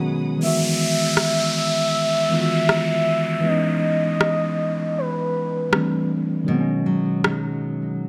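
A smooth, detuned portamento lead with chorus carries the melody from 0.4 to 6.1 seconds in this dreamy, romantic contemporary R&B excerpt at 79 BPM. It floats over an up-front, clean tine electric piano, a dark, fingerpicked nylon-string guitar with tape echo that plays arpeggios at the start and returns at 6.5 seconds, a produced electronic rim click and an electronic downlifter, set in light digital ambience as the chords move from Emaj9 through C#m9 and C6 to B6.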